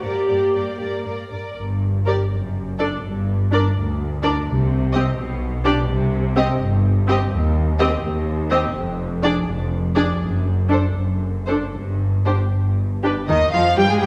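Dramatic and urgent, this brief G minor fragment of a quick classical-period movement for string orchestra moves in a rubato 6/8 at 76-85 BPM, with muted violins carrying a veiled melody over a second violin line, a distant, lightly vibrato viola accompaniment, dark cellos and a lush, up-front double bass section on the bass, all bowed con sordino throughout the 14.1 seconds in a moderate scoring-stage reverb.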